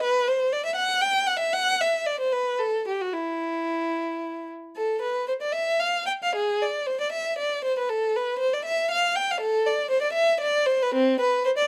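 The recording places a single violin close to the microphones, capturing fine detail with a light touch of reverb around it. This short fragment of a longer piece is a baroque-style suite movement for unaccompanied violin in E minor, moving in 6/8 at roughly 71-83 BPM by the dotted quarter, with a rubato feel that lets the pulse breathe. The mood is solemn and introspective throughout its 11.7 seconds. One bowed violin carries everything as the solo voice, sitting up front with a warm tone, soft attacks, singing vibrato and gliding portamento between notes, its line ranging from C4 to G5. The opening phrase returns at 4.8 s, giving the brief passage a sense of quiet, expressive reflection.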